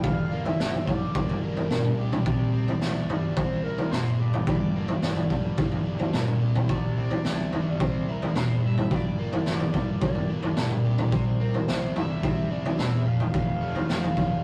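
A raw garage drum kit sits up front with a punchy kick, a medium-tuned snare and toms, its saturated, gritty sound rolled off at the top, driving this dark, hypnotic psychedelic rock excerpt in a straight 4/4. A biting, double-tracked overdriven guitar picks a riff over a Gm-to-C vamp, while a round fuzz electric bass hangs in the background and a screaming, guitar-like synth lead with phaser and vibrato carries the melody, all of them playing from 0.0 seconds and reaching an F chord at 13.1 seconds. The rough rehearsal-room recording carries tube saturation and light reverb.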